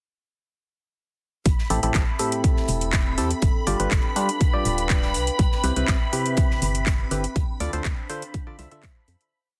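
Energetic and bittersweet, this short piano house piece in A minor at 122 BPM drops into its groove at 1.5 seconds with a punchy, up-front four-on-the-floor electronic kick, a house kit's claps and metallic hats, a very quiet looped breakbeat from an airy, polished studio kit, and a dark, syncopated FM bass riff with a hollow, organ-like tone. A moment later, at 1.7 seconds, a hollow, percussive organ stab riff in close voicing enters, treated with chorus, phaser and delay. Shimmering, vintage string-machine violins hold a high note, and a warbling, nostalgic tape-like pad joins at 2.2 seconds, with the strings, bass, stab and pad pumping under sidechain through Am7, G7, Cmaj7 and Dm7 before a fade-out from 6.7 seconds, all in a dense, heavily limited mix with light reverb.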